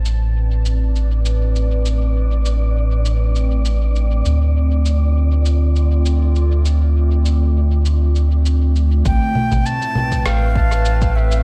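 A loose, lightly swung 4/4 groove comes from muffled, pitched-down electronic cabasa, congas and rim click, compressed and tape-softened, with studio reverb and dub echo trailing each hit. This meditative, spacious ambient dub piece rests on a deep, round sub bass that sits up front. Above it, a warbling, nostalgic lo-fi pad with chorus, phaser and its own reverb holds detuned, slow-blooming chords that move from Amadd9 to Dm7 and back. An airy, wind-like tuned noise layer drifts in at 0.5 seconds and stops at 9.1 seconds. At that point a breathy, reedy concert flute enters, close-miked with vibrato and dub echo, alongside an overdriven electronic kick tucked in the background. A light reverb gives the whole a gentle sense of room, and the passage is cut from a longer piece.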